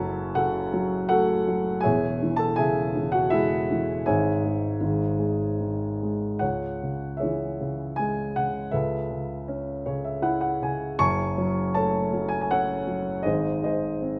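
Dark and wistful, this short excerpt from a longer classical piece unfolds as a lyrical solo for grand piano in triple metre, played with a free, rubato feel. The piano sounds dark and mellow, sitting up front and reaching from deep in the bass up to the high treble. Its first phrase drifts through minor harmonies before settling on a hollow open chord, and at 6.4 seconds a new section begins, moving through added-tone chords. Between 9.5 and 11.0 seconds a brief piano fill bridges the phrases, and the passage closes on an unresolved dominant chord that leaves the music hanging. A moderate recital hall reverb gives the sound a natural sense of space around the instrument.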